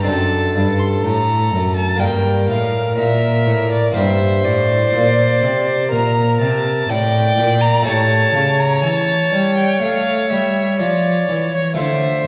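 Classical baroque-style sonata movement with continuo, grave and flowing, moving at 61 BPM in 4/4 with a rubato feel, heard from further back in a recital hall with a long, wet reverb of 1.8 s. A rich-toned violin carries the melody with expressive vibrato and portamento, while a warm second violin plays a smooth, even line beneath it, and a close, up-front cello holds the bass with smooth, even bowing and vibrato. An airy, brilliant harpsichord supplies full plucked accompaniment as the harmony passes through D7/F#, Gm and A7 in this short cut from a longer piece.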